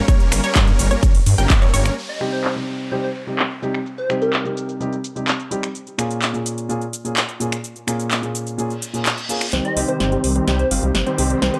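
Punchy and up front with light reverb, this euphoric, powerful festival progressive house excerpt opens on a drop where huge, bright supersaw chords, a menacing detuned saw bass and a gritty background unison pluck pump against a tape-warm electronic kick before the kick stops at 1.6 seconds, leaving the filtered big-room kit with metallic hats and snaps, a deep grand piano, a dark, catchy plucky unison lead and electronic risers and downlifters to carry the middle section until the supersaw chords, bass and pluck return at 9.5 seconds for a build-up.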